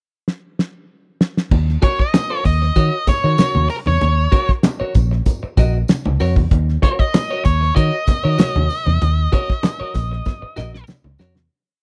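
An up-front octave-fuzz lead guitar, dark and distorted, carries this cool, sly funk piece in Eb minor at 96 BPM, playing a motif-based melody of call phrases from 1.8 to 10.8 seconds. A damped 70s drum kit opens alone with a fill during the pickup bar, its fat snare, tight kick and dark cymbals settling into a syncopated groove with ghost notes before a second fill near the close. At 1.5 seconds a round, foam-muted fingered bass joins on a syncopated riff anchored on the downbeat, with muted ghost notes and chromatic approach notes, while low-tuned congas with thick skins add a slap on two and open tones on four. A bright, twangy clean electric guitar scratches out a compressed sixteenth-note rhythm part, and a jingly tambourine sits in the background on the backbeat. The whole piece rides a single Ebm7 groove in a dry, close small-room sound with a 1970s studio character, fading out from 9.0 seconds to the end.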